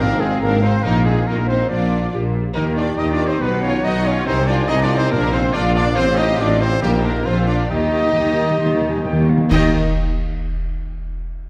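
A lush, vibrato-rich violin section carries the melody in this triumphant, adventurous heroic film-score excerpt, supported by a softer second violin line, a dark cor anglais, a mellow clarinet and a pure silver flute, with a very quiet viola accompaniment, sustained chords from a distant French horn section, ringing thumb-plucked harp arpeggios, trumpet stabs, and a deep bass of tuba, cellos and double basses; as the music slows from 5.1 seconds, dry timpani enter and play a fill leading into a closely recorded accent of dark clash cymbals and concert bass drum at 9.5 seconds, all set in a wet scoring-stage reverb.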